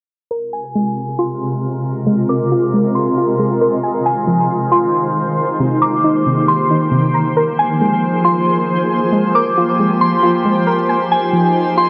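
A soft, round pluck opens at 0.3 s with arpeggios under a filter sweep, joined at 0.5 s by a pure, gentle synth bell melody high in the register and at 0.8 s by a shimmering, ethereal pad holding sustained chords up front. This spacious, melancholic half-time hip hop excerpt drifts through Ab69, Fm7 and Cm7 harmony, with chorus and digital delay on the pluck and bell, and phaser plus granular octave-up shimmer on the pad. A huge ambient reverb and a dark production give the whole passage a hazy depth.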